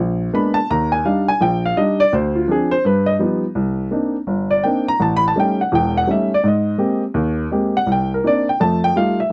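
Swung eighth notes drive this solo jazz piece at 167 BPM in 4/4, giving it a buoyant, swinging lilt in Eb major. An upright piano carries everything alone from 0.0 to 9.3 seconds, its tone woody and warm, sitting up front in the mix and ranging from deep low notes up into the bright upper register. The harmony moves through rich, colourful jazz chords, opening on Bb7b9 before settling onto Ebmaj7, then passing through Dm7b5 and Gaug7. A second phrase begins at 3.6 seconds on Cm9, moving through A7#11 and Abmaj9 before returning to Cm9 and closing on F9. The sound is dry and close, with a light touch of reverb, in the manner of a 1970s studio session, and the short passage is cut from a longer piece.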